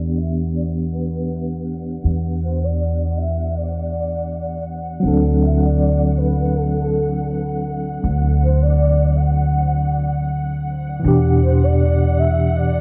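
Trip hop with a brooding, dark mood and a swung 4/4 feel, this short cut from a longer piece sits in a small room, dusted with vinyl crackle and a low-pass filter sweep running throughout. A woody pizzicato upright bass sits up front beneath a clean tine electric piano with tremolo, while a breathy sine lead carries the melody through ensemble chorus and tape echo over a distant, lush bowed string section. The harmony moves from Em7 to D7 at 5.0 seconds and returns to Em7 at 11.0 seconds.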